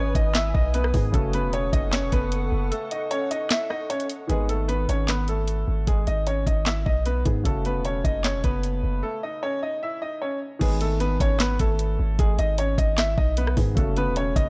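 Dark, melancholic half-time hip hop and trap at 152 BPM in G# phrygian, where a clear, open concert grand piano carries the melody up front through tape echo over a soft, felt-muted upright piano in the background, a glassy, warbling FM pad with ensemble chorus that is heard only until 4.3 seconds, a deep, sine-like 808 bass with long decaying notes, and a knocking trap kit with a sharp snare, bright hi-hats, handclaps, rim clicks and crash cymbal, all set in digital ambience.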